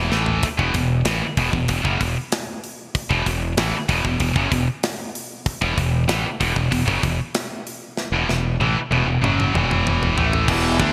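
A heavy, double-tracked high-gain guitar drives this dark heavy metal excerpt at 95 BPM in straight 4/4, picking a riff on an E5 chord up front. A growling, overdriven fingered bass sits beneath it, and a tight acoustic kit with bright cymbals and gated reverb punches through a fill that runs from 8.0 s. At 10.5 s, a very quiet, majestic full pipe organ adds sustained chords while a second distorted guitar plays in the background, all within a bright 1980s-style digital production with a moderate plate reverb.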